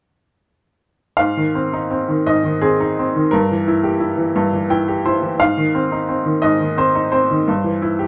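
A wet booth ambience surrounds a bright, woody upright piano set up front in this relaxed, lyrical classical solo in Ab major, played in 3/4 at 86 BPM with rubato, its short-sustained notes spanning G2 to G5 over chords moving from Ab through Gm6 back to Ab and on to C/G, with a brief piano fill from 4.4 to 5.4 seconds.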